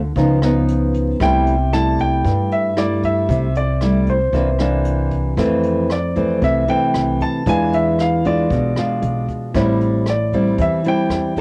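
A relaxed, breezy bossa nova at 115 BPM in straight 4/4, this excerpt cut from a longer piece moves from C major to F major at 5.4 s. A fingerpicked nylon-string guitar carries the accompaniment from the start, up front and classical in tone with a cassette-tape colour, while a woody, thumpy pizzicato upright bass with a dark edge plays underneath. A jazz brush kit of hi-hat, boomy kick and rim click sits low in the mix with a natural studio-room feel. At 1.2 s a warm, intimate grand piano enters with the melody in its upper register, up front with long sustain, audible action noise and its own cassette-tape tint. The harmony runs through chords such as Db9, C6 and C9 before shifting to Fmaj7, E7b9 and Am7 in the second section, all set in a short, wet booth ambience with the grain of a home cassette recording.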